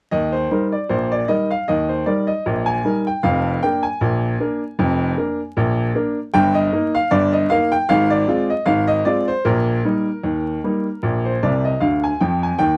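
Lively and cheerful, this short ragtime piano piece moves at 77 BPM in 2/4 with a light swing on the sixteenths, in E-flat major tuned slightly sharp to A4 = 441 Hz. A single upright piano plays solo throughout, reaching from F1 in the bass up to A-flat 5, and its tone is woody and boxy, sitting up front in the mix. The harmony starts on E-flat, moves to B-flat seven over F at 3.2 seconds, then passes through E-flat over G, F minor over A-flat and E-flat over B-flat before landing on B-flat at 11.0 seconds. A brief piano fill from 11.4 to 12.6 seconds rounds off this cut from a longer piece. The sound is a dry, close 1970s-style studio recording with little reverb and a layer of vinyl crackle.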